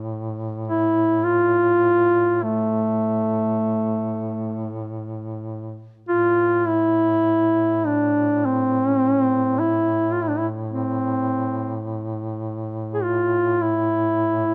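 Set in a slow, rubato 3/4 that drifts between 48 and 53 BPM, this mournful, longing fragment of a Caucasian folk lament sits in A minor. A duduk holds a low drone on A2 from the very start, its tone warm with a smooth top, placed up front in the sound. At 0.7 seconds a second duduk enters with the melody, ranging from A3 to G#4 and sung out with vibrato and scooped notes that give it a warm, folk-style ache. The melody duduk is close-miked and sits clearly louder than the drone beneath it. After the opening phrase, a second section begins at 6.1 seconds and carries the lament on until the fragment ends. Light reverb and close, detailed microphones keep the pair intimate, so the grain of each reed comes through plainly.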